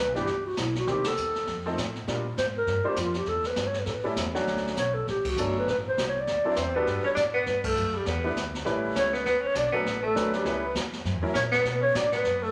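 A moderate large-studio reverb gives this swinging, sophisticated small-group jazz passage a natural room sound. Up front, a breathy clarinet carries the melody with a dark, whispered subtone, vibrato and scooped notes, close-miked and intimate. Beneath it, a woody, thumpy pizzicato upright bass with gut strings anchors the harmony, while a baby grand piano adds open, long-sustaining accompaniment and a brush drum kit brings dark cymbals, a high-tuned snare and a boomy kick. At 6.5 s a warm tenor saxophone joins as a second line with a soft attack and a smooth top, and the band punctuates the passage with a few shared accents. The piano drops out at 11.3 s, leaving the horns, bass and drums to carry the music to the cut.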